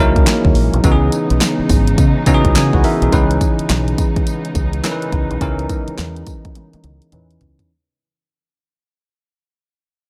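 A bell-like tine electric piano sits up front in this confident, bouncy new jack swing cut from a longer R&B piece, its clean, bright accompaniment carrying a subtle chorus and a low-pass filter before it breaks into a fill at 2.0 seconds. The groove runs at 105 BPM in 4/4 with a 16th-note swing, moving from Emaj9#11 to C#m9 in C# dorian. A pop drum kit arrives at 0.2 seconds with a punchy kick, fat snare, hi-hat, handclaps, tambourine and toms, sounding electronic, layered and produced, and it closes on a drum fill. Underneath, a deep dub fingered electric bass gives a round, dark, direct-amped line. A studio string section holds lush, woody, bowed chords with vibrato and a smooth top, softened by its own low-pass filter. From 3.1 seconds the passage moves into its second section with a filter sweep and a fade-out, all set in a dark, warm production with digital ambience.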